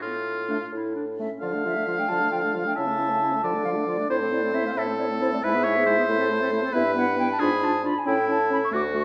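Quick classical-period wind quintet music in a straight 6/8, restless and urgent, cut from a longer piece and heard in a moderately reverberant recital hall. A punchy oboe with light vibrato carries the second line up front while a mellow bassoon holds the bass from the start, and at 0.5 seconds an airy, soft-edged flute takes the melody from a distance, joined by a roomy French horn and a smooth clarinet set in the background as accompaniment. The harmony moves through minor chords and their dominants toward a diminished seventh at 7.4 seconds before settling on A at 8.1 seconds.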